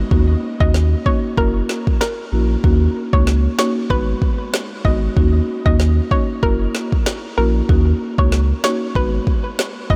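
Set in light digital reverb, this hypnotic, tough dancehall excerpt at 95 BPM in Eb phrygian rides a full, up-front sine-and-triangle sub bass with an octave layer and a produced electronic kit with a deep kick and woody snare, while a dark, smooth padauk-bar marimba on medium hard mallets cycles through Ebm7, Gb7 and Abm7, and a hollow, nasal, bouncy square-wave pluck with chorus and delay carries the melody from 0.6 seconds.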